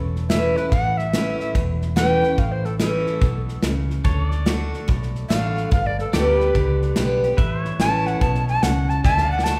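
Heartfelt and down-home, this honky-tonk and classic country passage swings along at 144 BPM in 4/4, cut from a longer piece. A mellow tenor recorder carries the melody from 0.3 seconds, its airy wooden tone up front with vibrato, tongued chiff and rolled-off highs. Beneath it, a bright, full-bodied dreadnought acoustic guitar picks the accompaniment, while a pedal steel guitar holds sustained chords with a clean, compressed, twangy sound, played with fingerpicks, slide and volume swells. A vintage electric bass, dark, round and foam-muted, anchors the low end, and a natural acoustic drum kit with a punchy kick and medium-tuned snare enters at 0.2 seconds, closing with a fill at 9.0 seconds. The chords move from A through D and G back to A and on to D, all set in the wet reverb of a recital hall.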